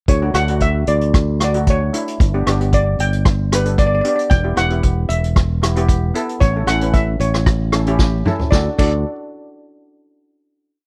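A carefree, bouncy calypso at 114 BPM in D major opens at once with steel pan, electric bass and an unplugged drum kit all starting together at about 0.1 seconds, joined a moment later by a second steel pan on accompaniment. The lead pan, a set of double seconds played with hard rubber sticks, spins a free, metallic melody in its upper register with a shimmering, boxy small-room colour, while cello pans underneath supply bright rhythmic triad chords through a simple D, G, Em, A progression. A punchy, up-front fingered electric bass drives a syncopated figure low in the mix's foundation. The drums, played with bundle sticks, keep a calypso groove on kick, snare, hi-hat, rim click, toms and crash, their sound mid-forward with a rolled-off top. A drum fill from 8.0 to 8.5 seconds leads into a final D chord that rings out to the close, all captured in a dry, close recording with a 1970s studio character.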